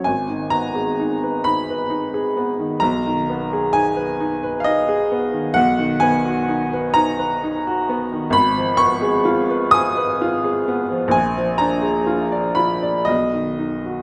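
Melancholic and wistful, this short cut from a longer romantic nocturne for solo piano unfolds in 3/4 at 65 BPM, with a free, rubato feel. A clear upright piano carries the whole 14-second passage alone, its woody, vintage tone sitting up front with a long sustain. Its range reaches from G#1 in the deep bass up to Eb6. The harmony moves from G#m through G#m/B to B, darkens on Fm7b5/Ab around 8.3 seconds, and leans on Bb7 before settling back on B near 13.1 seconds. The instrument is tuned slightly low, with A4 at 437 Hz, and a wet recital hall reverb with a 1.5-second decay surrounds the playing.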